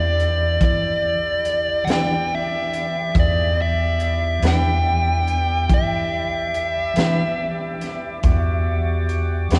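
A dark, smooth lead guitar with overdrive opens this brooding, soulful slow blues in a straight 12/8 feel, singing an upfront melody over an Em7 chord. It is joined from the start by a fingered electric bass, round and amped, and by a thick, gritty tonewheel organ holding sustained chords through a slow rotary speaker, its key click audible beneath the guitar. A crunchy breakbeat drum kit enters at 0.2 seconds with hi-hat, a punchy kick and a high-tuned snare, its saturated sound rolled off at the top. At 1.9 seconds a clean electric guitar slips in behind the others, picking a tremolo-laced accompaniment. A cathedral reverb with a long 5.8-second tail bathes the mix in the resonance of a church or concert hall, and the passage is cut from a longer piece.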